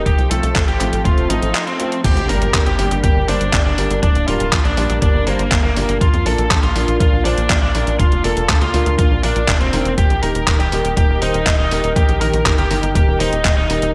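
A smooth, detuned analog pad, clear grand piano stabs with a long sustain, and a tight, nasal sawtooth sequencer bass open this bittersweet, danceable italo disco passage in G minor at 121 BPM, cut from a longer piece. A biting, overdriven lead guitar carries the melody through delay, over a gritty, thumpy electronic kick and an 8-bit drum machine's crash, handclaps and hi-hat in gated reverb. After a short break at 1.5 seconds, a very quiet electronic impact marks the move to Gm at 2.0 seconds, all within a lush hall and bright 1980s-style digital sheen.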